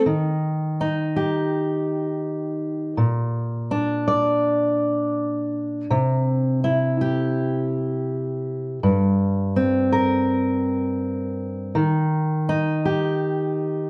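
Acoustic folk at a relaxed 82 BPM in straight 4/4, this brief passage cut from a longer piece carries a wistful, haunting mood. A lone fingerpicked steel-string acoustic guitar plays throughout, from 0.0 to 13.9 seconds, ranging from G2 up to D5. Its tone is dark and sits up front, with an auditorium-like depth. The harmony moves through Eb, Bb, C and Gm before returning to Eb at 11.8 seconds. A moderate large-studio reverb gives the guitar a sense of space, as if captured live in one room.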